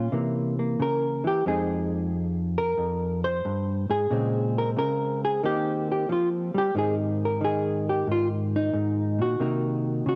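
A dark, clean hollow-body electric jazz guitar plays solo and up front through a compressed, cassette-tinged tone, moving through a playful yet sophisticated Ab major swing progression from C7b9 and Fm11 to Bbm9, Eb69, Abadd9 and finally Cm7b5 at 91 BPM, in a short fragment of a longer piece captured as a home cassette recording with a light reverb.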